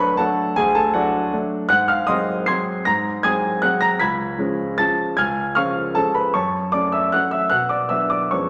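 A classical piano waltz in 3/4 at 156 BPM, bittersweet and wistful, played with rubato so the beats stretch and lean unevenly. A solo baby grand piano, warm, natural and up front, ranges from C#2 to B#6 across this 8.5-second fragment of a longer piece, moving through D, G#7, C#7 and F#m before settling on Bm. The piano sits in a wet recital-hall reverb that lingers for about 1.6 seconds.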